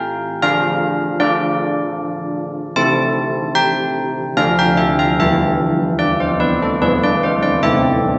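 Heard through a reverberant scoring stage with a muffled top end, this solemn, wintry classical tune for church bells moves in an uneven 3/4 at 75 BPM in A minor, with old church bells playing alone for 8.2 seconds, their close-miked bronze tone clangorous and beating with a minor-third overtone and a worn iron clapper, as the harmony passes from D minor through an E suspension to a closing A minor in this fragment of a longer piece.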